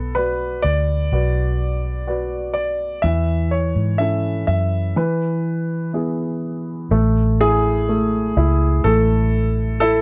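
A dry, close 1970s-style studio sound frames this tender, heartfelt pop ballad at 62 BPM in A major, where a polished, present grand piano carries the melody over a mellow, short-sustained baby grand accompaniment and a round, foam-muted vintage electric bass that sits dark and up front, with a break at 5.0 seconds before the music moves into a new section on Amaj7 at 6.9 seconds.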